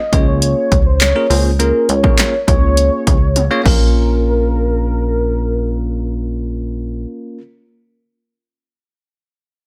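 A straight 4/4 pulse at 102 BPM drives this energetic, confident dance-pop excerpt in Bb minor, cut from a longer piece. A punchy analog drum machine sits up front with kick, snare, hi-hat, handclaps, toms and crash cymbal, its tape-tinged tone carrying the feel of a small room, and it launches a drum fill at 3.4 seconds before dropping out at 3.8 seconds. Beneath it, a plucky analog bass built from sawtooth, pulse and triangle waves gives a funky, wave-folded snap with a fast attack and quick decay, pumping under sidechain compression. A bell-like tine electric piano adds bright, clean accompaniment that also pumps with the sidechain, while a velvety synth lead carries the melody with a smooth, detuned unison tone, vibrato, chorus and digital delay. The harmony moves from Db6 to Bbm at 3.7 seconds as the music passes into a second section at 4.0 seconds, and the mix stays dry throughout.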